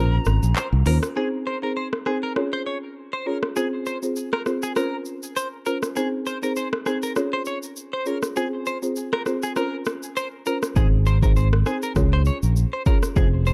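Joyful, breezy afrobeats at 100 BPM in Ab major opens with a brief, airy flute phrase in the background, bathed in tape echo and gone by 0.9 seconds, while a woody, dry marimba and a bright, twangy clean electric guitar riff with chorus and tape echo ride over a produced afro-pop kit of deep kick, smooth hats, handclaps, rim click and shaker, whose kick drops out from 8.4 seconds until the up-front, amped fingered bass, heard briefly at the start, returns at 10.8 seconds in a dark, warm production.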